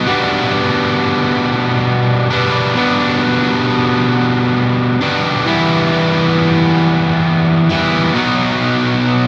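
A large, wet studio reverb with a digital sheen surrounds this short rock excerpt, giving it a cinematic, melancholic atmosphere. The only part is a bright, distorted electric guitar, picked and double-tracked, compressed and placed up front, playing alone from 0.0 to 9.3 s. Tape echo trails behind its notes, which range from B2 to E4. The music moves slowly at 44 BPM, counted in dotted quarters, in a straight 6/8 feel. The harmony passes from G/B to Em at 5.5 s and settles on a B5 chord at 8.2 s as the fragment is cut off.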